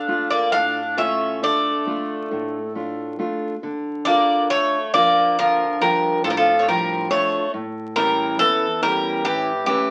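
Greek folk from a bouzouki band, cut from a longer piece, moves in a 9/8 metre with a wistful, melancholic mood, and the pulse speeds up over its length. Up front, a bright, metallic bouzouki carries the melody in its upper range, its picked double strings ringing with some octave doubling. A second bouzouki, warmer in tone, plays a lower second line beneath it with the same doubled-string shimmer. A fingerpicked steel-string acoustic guitar sits further back, filling out the accompaniment across a broad span of its range. The harmony rests on D minor until a shift to A at 7.5 seconds, and a new section begins at 3.6 seconds. The sound carries a moderate studio ambience and the crackle of a very old 78 rpm record, giving the music an aged, faded quality.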